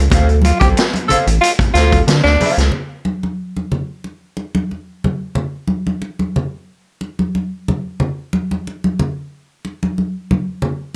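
Driving and funky, this funk excerpt at 91 BPM in D minor opens over a Dm7 chord with a rubbery, hollow square-wave bass up front, a vintage drum kit with a punchy kick and rolled-off top, a bright, twangy electric guitar with subtle chorus, and a raspy, gritty tenor saxophone line with scooped notes and light vibrato. At 2.7 seconds the rest of the band stops and the thick-skinned congas, played with hard hands, carry on alone until 10.8 seconds in a light reverb.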